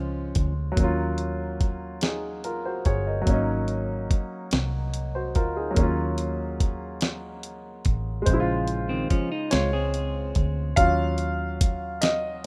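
A dry, rough home-demo mix opens this sultry, late-night slow R&B excerpt in 6/8 at 48 BPM in Eb dorian, moving through minor seventh and suspended ninth chords. Gritty sampler-style drums with a thumpy kick and fat snare sit up front alongside a warm concert grand with deep bass, while a dark, round, foam-muted fingered bass anchors the low end. A clean, twangy picked electric guitar adds a brief second line at the start and returns at 8.9 s, before the piano takes a solo at 10.8 s.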